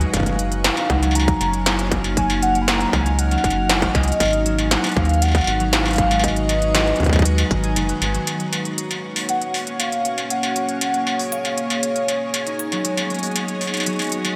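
A rubbery, hollow square-wave bass sits up front in this cerebral, intricate IDM excerpt at 118 BPM, its saturated, resonant filter pluck bouncing under the harmony until it stops at 8.2 seconds. An industrial drum kit pairs a clanging snare and smooth hats with struck metal, all under gated reverb. A distorted electronic kick drives the first half and falls away at 7.6 seconds. A concert harp's fingerpicked, ringing arpeggios run through digital delay, while an icy, crystalline glass pad holds slow-attack chords coloured by chorus and a gritty vintage 12-bit sampler sheen. A velvety sawtooth lead with vibrato carries the melody up high, and a bubbling stepped-filter texture drifts in the background. The harmony moves between F#maj7 and G#m7, the second section begins at 8.3 seconds, and the bright 1980s-style digital production is bathed in a lush hall reverb.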